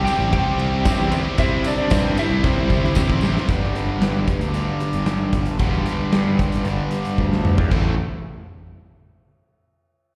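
Driving and brooding, this classic rock fragment at 113 BPM moves from C to G to A minor over a growly, fuzz-soaked fingered bass up front and a big, dark acoustic drum kit with a punchy kick and a rolled-off top that adds fills. A slightly broken-up lead guitar with slapback echo carries the melody above a lower, distorted fuzz second line until both stop at 2.9 s. Three overdriven guitars sit in the background playing riffs: a bright cranked stack, a sludgy one, and a double-tracked one that drops out at 3.5 s. A shimmering, octave-doubled twelve-string acoustic adds accompaniment, a jingly tambourine plays until 3.3 s, and it all sounds like a live gig heard through the venue's PA, with small-room ambience and recital-hall reverb.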